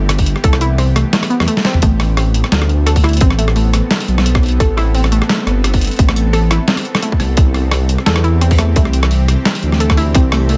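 Half-time drum and bass at 173 BPM in A minor, this tense, spacious excerpt sits on a single Amadd9 chord, with a deep, rumbling detuned saw bass and a tight, overdriven electronic kick up front beside a gritty, pitched-down boom bap sampler-style kit of hi-hat, rim click, snare and toms that plays a fill at 1.6 seconds. In the background, a bright, string-like bowed drone holds sustained chords with vibrato, reverb, 12-bit sampler grit and sidechain pumping. A warbling, lo-fi pluck enters at 0.4 seconds with mellow arpeggios coloured by chorus, cassette tape and tape echo, all within a mostly dry mix.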